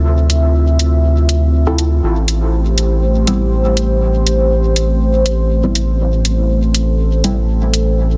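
A round, deep analog bass sits up front through this cavernous, hazy dub techno excerpt at 121 BPM with a light 16th-note swing, beneath a dark, detuned sawtooth pad with chorus and phaser holding Dm7 and Am7 chords, a tape-warm electronic hi-hat with dub echo from 0.3 s, and soft, nasal chord stabs with chorus, phaser and dub echo arriving at 1.7 s, set in light reverb with a dense, heavily limited modern master.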